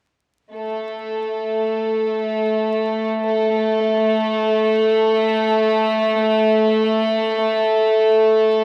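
A dark, reedy violin section with gut-string tone and light vibrato holds sustained chords in free time from 0.5 to 8.6 seconds, giving this cinematic, hypnotic trip hop excerpt a period-style feel, its cassette-tape grain, wet spring reverb, small-room ambience and vinyl crackle framing a home recording on cassette.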